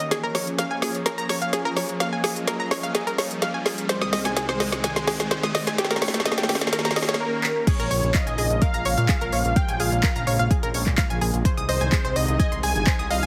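Expansive and dreamy, this progressive house excerpt moves at 127 BPM in Bb dorian, cut from a longer piece. It opens with a build-up: a lush supersaw pad holds sustained chords through a filter sweep, a round, detuned analog pluck spins arpeggios with chorus, dub echo and a touch of vintage 12-bit sampler grit, and a deep house kit of woody snare, handclaps, smooth hats and crash plays a fill while an electronic riser hovers in the background until 7.2 seconds. At 7.7 seconds the drop lands, as a deep, layered electronic kick sits up front and a fat, nasal analog bass enters just after with saturated, filter-plucked sawtooth tones. A bold unison lead, mellow with vibrato, a sub octave and delay, carries the melody from 7.2 seconds. The pad, pluck, lead, bass and the kit's hats and cymbals all pump with sidechain, while the chords move through Bbm7, Ab/C and Eb7. The mix sits in a moderate digital room reverb with a heavily compressed, radio-like polish.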